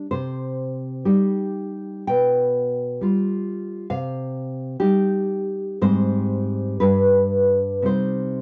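A dry, close studio sound in a 1970s style, touched by light reverb, frames a lone nylon-string guitar placed up front, its old strings giving a dark, woody, thumb-plucked tone. This melancholic, passionate romantic piece in C minor moves in a rubato 6/8 at roughly 55-70 BPM, ranging from G2 to G5 as it travels from Cm through G7/B, Abmaj7 and G before returning to Cm at 7.9 seconds. The 8.4-second fragment is cut from a longer piece.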